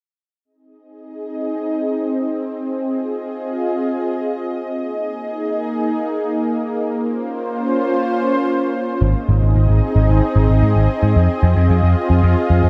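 A straight 4/4 pulse at 112 BPM carries this uplifting, dreamy synthwave excerpt in Ab major, tuned to A4 = 444 Hz. A thick, detuned sawtooth unison pad with chorus fades in at 1.1 s and holds sustained chords up front, its slow attack and long release giving each change a soft, lush edge. Through the opening stretch a filter sweep colours the pad as the harmony moves from Ab to Fm7, Ebsus4 and Bbmadd9. At 9.0 s a picked electric bass enters, growly, punchy and amped, adding bright low-end weight as the progression returns to Ab and Fm7. A moderate hall reverb with a 2.6-second tail wraps the pad and bass in a spacious, glowing sheen.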